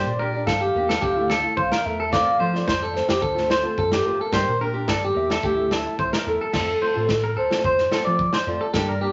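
Highlife guitar band music in F major at 109 BPM in a straight 4/4, this short cut from a longer piece feels sunny and carefree. A velvety synth lead with a soft attack, vibrato and chorus carries the melody, while a bright, twangy clean electric guitar sits up front playing arpeggios. Beneath them, a dark, small-sounding nylon-string guitar fingerpicks the accompaniment and a punchy fingered electric bass holds down the low end. A gritty, saturated breakbeat kit with a tight kick, dark cymbals and crash enters at 0.5 seconds and drops out at 8.9 seconds. The chords cycle through Gm, Dmadd9 and F, shifting into a new section at 6.5 seconds, all set in a moderate studio reverb, with nothing above 7.7 kHz.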